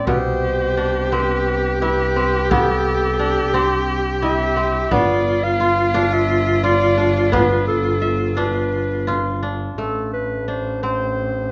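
A warm, jazz-inflected solo clarinet carries the melody with light vibrato in this pensive, hypnotic piece of contemporary chamber music, cut from a longer work. It moves in an uneven 7/8 at 173 BPM counted in eighths, with a straight feel and tuning set to A4 = 435 Hz. Beneath it, a fingerpicked kora spins ringing, crisp arpeggios while a single bowed double bass holds a clear, focused low line with vibrato. A bright bowed viola with vibrato adds a second line that sounds distant yet up front, and a deep frame drum, played with hard hands in a live room, sits very quietly underneath; both stop at 9.4 seconds. The harmony moves from Cmaj7 to G7 and then settles on A minor as a new section begins at 9.8 seconds, leaving clarinet, kora and bass to finish. Close, detailed microphones and light reverb give the ensemble an intimate, finely etched sound.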